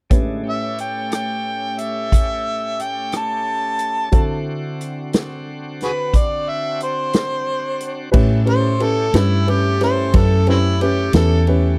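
Gritty and laid-back, this slow blues excerpt moves at 60 BPM in a straight 12/8 in A mixolydian, with a woody upright piano comping and a bright, shouting tonewheel organ holding overdriven chords through a slow rotary speaker, over a boomy, up-front big-band drum kit of kick, snare, hi-hat, ride, crash and rim clicks. A warm, overdriven harmonica carries the melody with vibrato, tongue slaps and scooped notes, taking a jazz-style solo from 8.1 s. At that point a dark, round, foam-muted electric bass enters punchy and up front as the harmony, having moved from A7 to D7, arrives on A9, all captured in a dry, close 1970s-style small-room sound.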